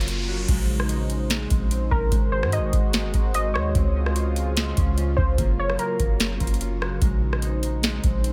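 Atmospheric cloud-rap hip hop at 147 BPM in a half-time feel, blissful and floating, cut from a longer piece. A short electronic riser opens the first 0.5 seconds before the chords settle in, moving from Bbm11 through Ab7, Dbmaj7 and Gbmaj7 and back to Bbm11. A smooth, detuned sawtooth pad with a sub octave holds sustained chords under chorus, pumping against the sidechain, while a fingerpicked Celtic harp rings out arpeggios through a delay. A warbling, lo-fi pluck with a filter sweep carries the melody until 6.6 seconds, its mellow tone blurred by chorus and delay. Underneath, a soft, round 808-style bass sits dark and deep, and a booming analog drum machine, re-recorded in a large room and placed up front, brings a deep kick, crisp snare, metallic hats, rim clicks and crash, all in a dry mix with little reverb.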